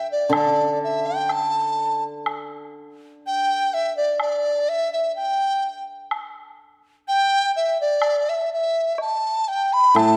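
A reverberant recital-hall sound surrounds this short cut from a Chinese traditional chamber piece, pastoral yet festive, moving at a free, rubato 62 BPM in 2/4 in the D zhi mode. The bamboo dizi carries the melody up front with an airy, buzzing, hollow tone, shaded by vibrato and tongued notes, while a close, dry woodblock ticks quietly beneath it. The hammered dulcimer adds shimmering, ringing low notes from 0.3 to 3.2 seconds, then falls silent until a brief return at 9.9 seconds.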